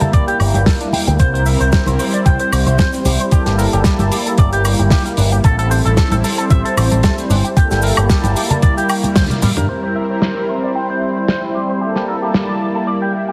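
Sensual and cosmic, this nu-disco excerpt rides a gently swung groove: a smooth, detuned sawtooth pad with chorus, delay and sidechain pumping sits up front beside a clean, twangy envelope-filtered electric guitar riff, while a dry, damped 70s kit with a rolled-off top, hard-hand congas and cabasa in the background, and a thumpy, up-front electronic kick drive the beat. A punchy picked bass with an envelope filter, tube saturation and pumping anchors the low end until a band accent at 9.2 s; the kick drops out at 9.3 s as a drum fill leads to 9.7 s, where the bass and hand percussion fall away. The whole mix is heavily compressed into a radio-like sound, set in echo-chamber reverb with a faint mains hum.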